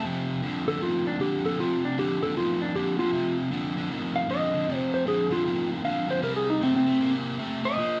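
From the first moment, a clean lap steel guitar and a cranked stack guitar start together in this gritty, rollicking blues, heard as a short cut from a longer piece with a swung feel. The lap steel carries the melody with a twangy, fingered slide tone that is compressed and sits up front, ranging from C4 to F5. Beneath it, the stack guitar drives a low, picked riff, bright and overdriven, with spring reverb adding a touch of splash to its bite. Both guitars play throughout the 8 seconds, with the harmony resting on F5 before moving to C5 at 6.2 seconds. The band sounds like it is playing live in one room, with a moderate stone-room reverb giving the whole performance a hard-walled, lively ambience.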